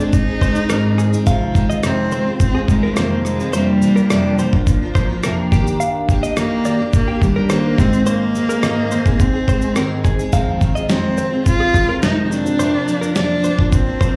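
Acoustic pop with a heartfelt, easy-going mood at 106 BPM in 4/4, this cut from a longer piece sets a rich, focused bowed cello melody with vibrato, up front and touched by slapback echo and plate reverb, over a full-bodied, double-tracked picked jumbo steel-string acoustic guitar moving through Ab, Fm7, Bbadd9/F and Ebmaj7. A dusty, sampler-style soul drum kit sits up front with a gritty, overdriven sound, a thumpy kick, a medium-tuned snare, rim clicks and shaker, while a clean, direct-recorded electric guitar enters at 0.4 s with warm, compressed picked arpeggios washed in spring and plate reverb. The whole performance is heard as a live gig through a venue's PA, carrying a moderate club reverb.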